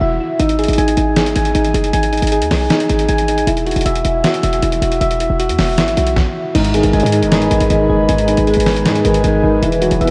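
Melancholic and eerie, this half-time trap hip hop fragment at 156 BPM in G# minor opens with round, mellow electric-piano-like synth arpeggios shimmering with chorus and tremolo over a punchy, tight 808-style bass, then gritty, compressed sampler-style drums with a thumpy kick and fat snare enter at 0.4 seconds, a dark, vintage baby grand piano adds accompaniment from 6.5 seconds, and a moody sawtooth analog pad with phaser swells in behind at 7.3 seconds, all bathed in a dreamy cathedral reverb.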